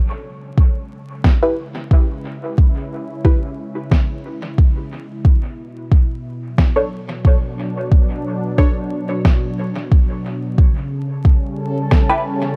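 Dark and dry with a bed of vinyl crackle, this hazy, spacious ambient dub fragment fades in on a smooth, detuned sawtooth pad holding chorused chords, joined at 0.6 seconds by a soft, overdriven kick up front, then a muffled, pitched-down snare trailing dub echo and muted, deep chord stabs with a filter pluck, phaser and echo, before a reversed, granular triangle texture swells in bright and dreamy at 11.3 seconds.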